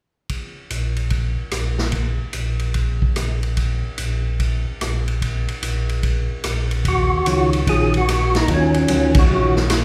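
Soulful and late-night, this short cut from a longer soul jazz organ trio piece swings in four. A big-band drum kit opens at 0.3 seconds with hi-hat, ride cymbal, rim click, snare and kick, sounding acoustic and natural with a punchy kick and medium-tuned snare placed up front. Moments later a mellow tonewheel organ takes the bass line, its round, dark tone lightly overdriven through a slow rotary speaker, with vibrato and key click. At 6.9 seconds the music shifts onto an Ebm9 chord as a second tonewheel organ enters with the melody, fat and percussive with third harmonic percussion, chorus vibrato, overdrive and a slow-turning rotary speaker. A clean, fingered hollow-body electric guitar joins in accompaniment, and the band hits an accent at 9.1 seconds, all set in the moderate reverb of a recital hall.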